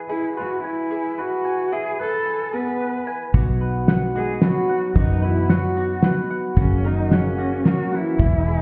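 Indie folk in 3/4 with a hopeful glow, this brief excerpt from a longer piece opens on a mellow, distant brass ensemble holding chords beneath round mandolin arpeggios while an expressive bowed cello carries the melody up front with vibrato and portamento, a distant French horn adds a second line from 2.5 seconds, and at 3.3 seconds the arrangement builds as bright, full-bodied picked acoustic guitar, a dark, round fingered electric bass, a cloth-damped, thuddy drum kit with a fat snare and a barely audible grainy egg shaker join in, the whole mix heard muffled as if through a wall in a stone room.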